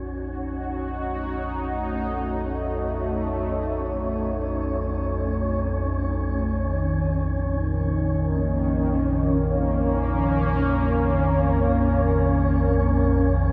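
Dark and ominous, this free-time dark ambient drone in Bb minor, cut from a longer piece, fades in a deep, rumbling, detuned wave-folded drone in the low register, a bright, resonant sawtooth pad with a sub octave, filter swell and chorus holding sustained chords that move from Gbm to Bbm at 6.5 seconds, and an airy, breathy wind-like noise texture up high under shimmer reverb, all steeped in a huge ambient room.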